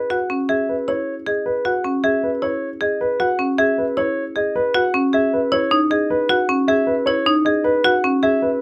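Meditative and hypnotic, this brief fragment of minimalist classical pattern music rests on a single C#m7 chord in a steady, straight 4/4. A dark, mellow grand piano carries the melody up front, its intimate, vintage tone revealing audible action noise, while a marimba struck with hard mallets spins out bright, woody arpeggios on rosewood bars in the register just beneath it, equally up front. Close, detailed microphones and a light reverb keep both instruments present and clear throughout the 8.6-second clip.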